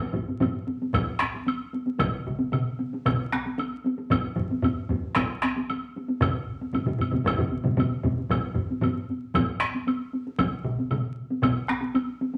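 A taiko ensemble struck with hard sticks opens the excerpt, close and dry at the front, and is joined almost at once by a second taiko group and then, at 2.0 seconds, by a third, both on heavy sticks in a small room, with a woody woodblock sounding in a live room. This is Japanese traditional drumming at 114 BPM in a straight 4/4, ceremonial and powerful, with a solo taiko part entering at 0.9 seconds in a vintage, band-limited tone. The whole excerpt sits in a wet club reverb with vinyl crackle and a dulled top end, and the first ensemble drops out at 9.7 seconds as the others carry on toward the end.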